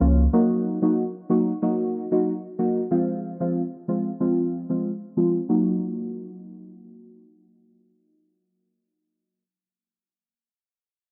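Tough and hypnotic, this dancehall passage, cut from a longer piece, moves at 93 BPM in a straight 4/4 in E-flat dorian, tuned to A4 = 437 Hz. A single deep, mellow chord stab carries it from 0.0 to 9.4 seconds, a dark, detuned blend of sawtooth, triangle and sine with a fast attack and decaying tail, sitting up front under chorus, phaser and a moving notch, with a filter sweep shaping it through the first 5.5 seconds. The harmony shifts from Ebm to Fm and back to Ebm at 5.5 seconds, all captured in a dry, gritty hardware sound with transformer saturation and light reverb.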